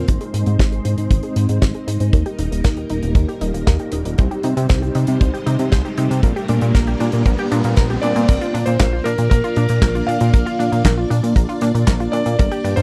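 Bittersweet and nostalgic, this italo disco excerpt moves at 117 BPM in a straight 4/4, with a lush string machine holding sustained chords and a detuned unison pluck spinning tape-echoed arpeggios in the background, both under filter sweeps until 8.3 seconds, while a glossy chorused synth bass sits up front over Ab, Eb, Cm and Gm/Bb. A tight, dry kick drives the damped 70s kit of snare, hi-hat, handclaps and crash, and a faint electronic riser builds from 2.9 to 8.3 seconds. At 8.0 seconds a warm electric grand piano enters with a gritty, echoed melody as the harmony lands on Bb, all captured in a close, dry 1970s-style studio sound.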